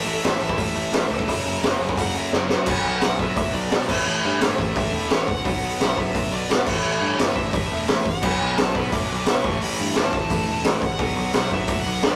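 Guitars open this raw, urgent punk rock excerpt at 173 BPM in B minor: a smooth overdriven lead melody and a tight, distorted riff sit in the background over a very quiet cranked stack guitar, while a double-tracked, compressed distorted electric guitar drops out at 2.7 seconds and returns at 8.2 seconds. They are joined by a growly, punchy picked electric bass and an up-front, gritty garage drum kit with a boomy kick and a high-tuned snare that plays a fill just before the 2.7-second section change, all in a rough rehearsal-room sound with light reverb and tube saturation.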